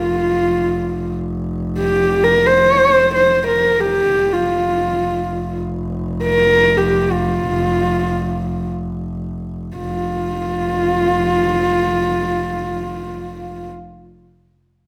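A recital hall's reverb surrounds this short fragment of Mongolian folk music, placing two close, bowed string players in a resonant space with a proud, vast mood. The horsehead fiddle carries the melody up front, its husky, intimate tone shaped by a soft attack, light vibrato, portamento and an airy bow on its horsehair strings. Beneath it, a single double bass holds a low, rich drone with its own vibrato and a biting, intense edge, sitting well under the fiddle in level. Both parts sound throughout, and the music eases back in pace from 4.1 s to 9.8 s before moving into a new passage at 9.8 s. Tuned slightly high to A4 = 441 Hz, the piece unfolds in free time with a spacious feel.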